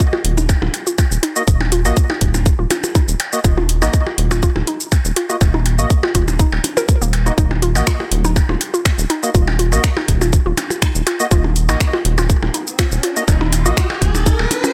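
This hypnotic, quirky minimal techno piece in Eb minor at 122 BPM opens with a tight, up-front layered electronic kick, a booming analog drum machine of finger snaps, shaker and metallic hi-hats, and a detuned square pluck riff with chorus, digital delay and sidechain pumping, joined by electronic percussion blips re-recorded in a large room and a rubbery, wave-folded square bass that also pumps beneath; a hollow, percussive organ-like stab with ring modulation, ensemble chorus and delay enters at 1.4 seconds, and an electronic riser arrives at 12.5 seconds in a dry mix.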